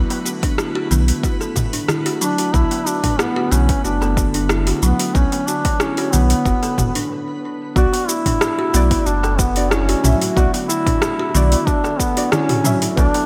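A bright, 1980s-style digital sheen and a moderate plate reverb frame this mystical, warm organic downtempo excerpt, which moves with a light swing on a chord change from D to Bm7. A warbly, nostalgic pad with a lo-fi, detuned character sustains chords in the background, while a woody kalimba plays short, thumb-plucked arpeggios through a delay and a round sine sub bass sits up front with sidechain pumping. A deep house kit of metallic hats, rim click, shaker and toms with gated reverb enters at 0.1 seconds, followed by an overdriven electronic kick at 0.4 seconds, and a small clay-shelled darbuka sits behind them. From 2.2 seconds a mellow duduk carries the folk-style solo melody up front, with vibrato, scooped notes and a digital delay, while a twinkling granular texture adds octave-up shimmer until a brief stop at 7.1 seconds. After the break, a dark, nasal chord stab with a filter sweep joins in the background, giving the final section a deeper, fuller accompaniment.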